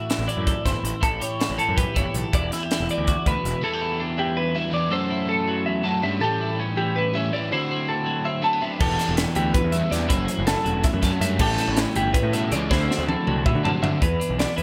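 Intricate and wistful, this math rock and midwest emo passage, cut from a longer piece, moves briskly at 323 BPM counted in eighths through a straight 7/8 in E minor. Two bright, clean twelve-string electric guitars run throughout: one holds the accompaniment with a subtle chorus and a twangy edge, while the other, up front, spins high arpeggios bathed in lush chorus. A crisp fusion drum kit with a high-tuned snare, tight kick and pumping small-room sound joins alongside a growly fuzz bass, both dropping out after 3.5 seconds and returning at 8.8 seconds, with a drum fill starting at 12.7 seconds. A crunchy, double-tracked overdriven guitar riff enters at 3.6 seconds and carries on until 14.0 seconds, riding chords that shift from Em7 through F#m7b5, A9 and D13 before landing on an E7 with its third omitted. Light reverb lends the mix a touch of space.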